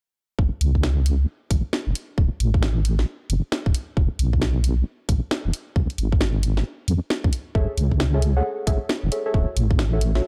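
UK garage in a two-step style at 134 BPM in F# minor, skippy and bouncy with a swung 16th feel, where a deep, wobbling sawtooth-and-sine bass with chorus sits up front beside a tight, layered electronic kick and a garage kit with cracking snare and hi-hat, and a soft, nasal chord stab with chorus, delay and a filter sweep joins them at 7.5 seconds on F#m9 then Dmaj9, all in a dark, dry production cut from a longer piece.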